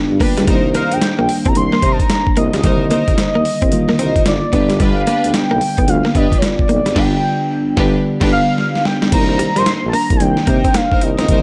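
A gritty, overdriven sampler-style drum kit with a thumpy kick sits up front in this confident, punchy new jack swing excerpt, its swung sixteenths setting the groove as a velvety sawtooth synth lead enters at 0.8 seconds with vibrato and chorus. A mellow, round FM electric piano, a roomy tuba bass with scooped notes, a clean direct-recorded electric guitar riff bathed in lush chorus, and focused symphonic string stabs with digital delay fill out the groove over Cm7 and G. A band accent arrives at 7.0 seconds, followed by an electric piano fill and a drum fill that lead into a new section at 9.1 seconds, all under light reverb.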